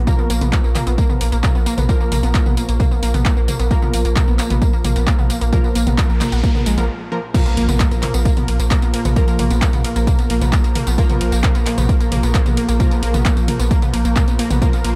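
A punchy analog kick drum, re-recorded in a small room, drives this dark, industrial stretch of peak-time techno in a straight 4/4 metre. Beneath it sits a deep, thick, saturated sub bass that holds one low note through a low-pass filter and pumps with sidechain compression. A lush, bright, wave-folded pluck riff with ring modulation and detuned unison voices rides through cassette-tape grit and tape echo, joined by detuned supersaw stabs that also pump and echo. A very quiet, eerie, metallic FM drone warbles in the background with chorus and its own reverb, while a drum machine adds handclaps, hi-hats, ride, crash, tambourine and toms. A faint noise sweep enters at 6.1 seconds and leads into a short break, and at 7.3 seconds the drop lands with an impact, all inside a dark, lightly reverberant production.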